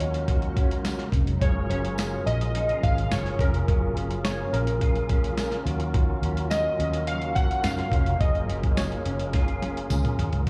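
Heard as a live gig through the venue's PA with club reverb, this dreamy, laid-back 106 BPM indie and bedroom pop excerpt in F# major drifts between D#m7 and F#maj7, with warbly, detuned lo-fi synth keys carrying the melody over a gritty, up-front sampler-style drum kit with a thumpy kick, a dark, foam-muted fingered bass, a lightly overdriven tonewheel organ spun through a fast rotary speaker, a twangy, slightly broken-up guitar from a small old amp in the background, a very quiet shimmering ambient pad, and a jingly tambourine entering at 0.8 seconds, before a drum fill arrives at 9.3 seconds.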